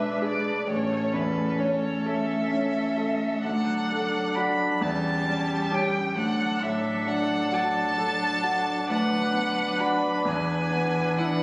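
Classical and lyrical, this slow romantic piano-quintet movement in A major sways in a rubato 6/8 at 44 BPM, with a rich, expressive violin singing the melody up front with vibrato and portamento, a second violin with a smooth, focused top and a background cello with a soft attack and gliding portamento carrying second lines, while a clear grand piano of short sustain and an even, bowed viola supply accompaniment, all caught by a phone in the room and set in a large studio reverb through an 11.4-second excerpt cut from a longer piece.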